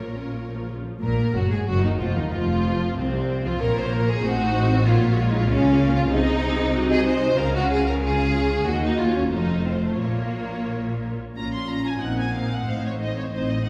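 A restless, urgent classical-period movement for string orchestra opens with all five sections together in flexible rubato. The dark, distant first violins carry an expressive melody with vibrato in the background, while a rich, smooth second-violin line sits up front, and close violas supply soft-attacked accompaniment with portamento. Even-toned cellos and expressive double basses anchor the bass, and the lush ensemble is heard from further back in a wet scoring-stage reverb in this brief cut from a longer piece.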